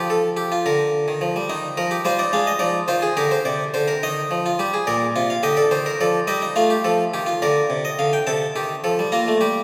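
The music moves in a lilting 6/8 with a straight, even feel, giving this baroque-style three-part fugue a lively yet stately bearing. A solo harpsichord carries all three voices across a span from Bb2 to Bb5. Its tone is bright, airy and plucked, with the character of a French-style instrument sounding a single set of strings, and it sits up front even though the listener seems placed further back in a reverberant concert hall whose long tail lingers around every note. The harmony moves through chords such as F, Bb/D, Eb, Fm and Cm/Eb before settling on F7 and Bb. At 8.3 seconds a new section opens on an Adim/C chord, and the passage breaks off at 9.6 seconds as a fragment of a longer piece.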